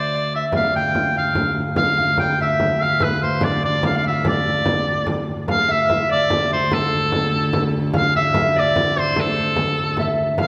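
A bright, vibrato-laden shawm carries the folk-style melody up front from the start, over a ringing, fingerpicked concert harp second line and a nasal, gut-string viola da gamba drone on D2, with a frame drum struck by hard hands joining at 0.5 s in this ancient, driving medieval dance excerpt in D dorian, played in 6/8 at 97 BPM counted in dotted quarters and heard from further back in a wet, reverberant scoring-stage space.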